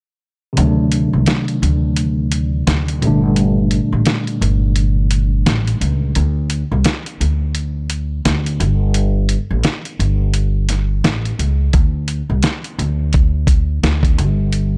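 A mellow tine electric piano opens this dark, moody boom-bap hip-hop excerpt at 0.5 s, filtered and heard through its built-in speakers, over swung sixteenths and shifting chords such as D7b9 and Gmadd9. A woody, growly pizzicato upright bass sits up front with a gritty, compressed, sampler-style soul drum kit of hi-hat and fat snare; the piano drops out at 6.2 s, leaving bass and drums. The thumpy kick only joins at 11.7 s, all set in a digital ambience.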